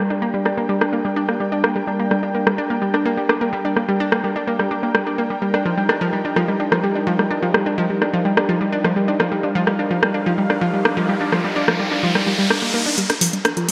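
This driving, cinematic slice of melodic techno in G minor at 127 BPM opens with a thick, detuned sawtooth unison pad holding slow-attack chords with a long release, alongside a round, up-front analog pluck playing arpeggios with a fast attack, a filter sweep and a warbling vintage chorus and delay. At 0.5 seconds an overdriven, layered electronic drum kit enters with hi-hat and rim click; its snare and hats are low-pass filtered, and the kit carries gated reverb. The harmony moves from G minor to E-flat at 5.4 seconds, and an electronic riser comes in at 10.3 seconds before the chords settle back on G minor at 13.0 seconds. The whole mix sits in a wet hall reverb with a 2.3-second decay, giving it a bright 1980s-style digital sheen.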